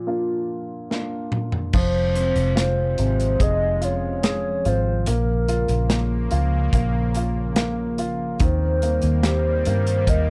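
A dry excerpt of a melancholic, emotional pop ballad opens with a hollow, woody clarinet-like synth lead, with chorus and slapback echo, singing the melody over polished grand piano; a drum fill on an up-front studio kit with a punchy kick arrives at 0.9 seconds, and at 1.7 seconds a round, dark, foam-muted fingered electric bass and an evolving, detuned sawtooth pad with chorus join beneath the minor-key chord changes.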